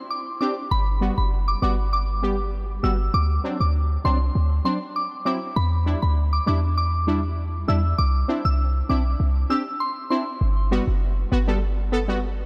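Dancehall at 99 BPM in G major, sunny and bouncy, cut from a longer piece and moving through Gmaj7, D7, Em7 and Cadd9 before returning to Gmaj7 at 10.4 s. A soft, pure FM synth bell carries the high melody with chorus and tape echo from 0.1 s, while punchy, detuned sawtooth brass stabs, wave-folded and shaped by a filter sweep, fill the middle with chorused accompaniment. A deep, boomy sine 808-style bass sits up front and louder than the other parts, all set in light reverb with a digital ambience.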